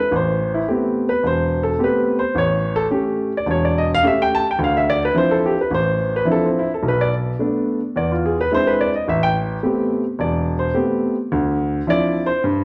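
Swinging and moody, this short excerpt of solo jazz is taken from a longer piece and moves at 107 BPM in 4/4 with a firm swing on the eighth notes. A grand piano carries everything alone from start to finish, its tone warm, present and polished, sitting up front in the mix and spanning from deep bass notes up to the upper middle of the keyboard. The harmony stays in A minor, opening on Am9 and passing through A7, Dm9, Bm7 and E7b13 before returning to Am9 and settling on Dm9 near 11.3 seconds. The tuning sits slightly low, with A4 at 438 Hz. A large studio reverb with a decay of 1.4 seconds bathes the piano in a wet, roomy glow that deepens the moody atmosphere.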